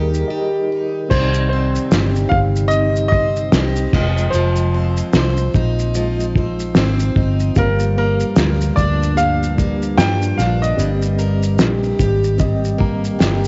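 A bright upright piano carries the melody with a present, polished tone in this easy-going, heartfelt acoustic pop excerpt, its woody, intimate sound marked by audible action noise and short sustain, with a cassette-tape color on its part until it stops at 12.2 seconds. Underneath, a picked plugged-in twelve-string acoustic guitar adds a shimmering, octave-doubled accompaniment, while a reed electric piano with fast tremolo sits in the background and plays fills at the opening and again from 12.4 seconds. A vintage muted fingered electric bass gives a round, punchy low end, and a cloth-damped drum kit, entering at 0.1 seconds, brings a thuddy, gritty feel with a fat snare, tight kick, shaker and dark, muffled cymbals. The tempo is a relaxed 74 BPM in 4/4 with a gentle swing, moving through Eb, Cmadd9, Fm7, Gm7 and Eb6/G. The home cassette recording has little reverb and a rolled-off top, giving the whole a close, lo-fi intimacy.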